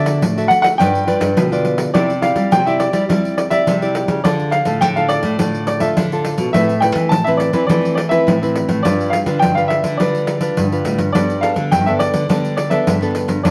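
A sunny, joyful blend of samba and choro moves at 104 BPM in a straight 4/4, in C major with tuning set to A4 = 439 Hz, heard as a short cut from a longer piece. A baby grand piano with a natural, warm tone carries the melody high in its range, between D5 and A5, from the very start. Beneath it, one fingerpicked classical nylon-string guitar plays the accompaniment across a broad span from A2 to E5, while a second fingerpicked nylon-string guitar, placed up front, holds down the bass between F#2 and G3. A jingly pandeiro, close, dry and forward in the mix, joins at 0.1 seconds and drives the groove to the end. The band plays live together in a stone room whose reverb lends a wet glow with a 1.1-second tail, and a layer of vinyl crackle gives the sound an aged, homely patina. The harmony moves from Dadd9 and G7 into a longer passage beginning at 1.9 seconds that travels through Cadd9, Dm, Amadd9 and G7 before settling on Gadd9.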